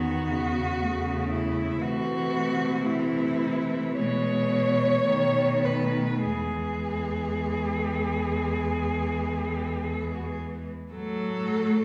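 Set in a slow, rubato 4/4 that drifts between 49 and 61 BPM, this serene, lyrical classical passage for cello ensemble is cut from a longer piece and sits in E major. Four bowed cellos, one player each, sound together from 0.0 to 11.8 seconds, every one of them played with vibrato. The lead cello carries the melody between E4 and C#5 with a rich, focused tone and a smooth top, placed up front. Beneath it, a clear-toned cello adds a second line from F#3 to B3 in the background, and a more distant cello fills in accompaniment between C#3 and F#3. The bass cello, also up front, anchors the harmony from E2 to C3 as it moves from A/E through Am/C and E/B to B9, settling on E at 6.2 seconds before turning toward F#m/A at 10.9 seconds. A recital hall reverb with a 1.5-second decay wraps the ensemble in the resonance of a church or concert hall.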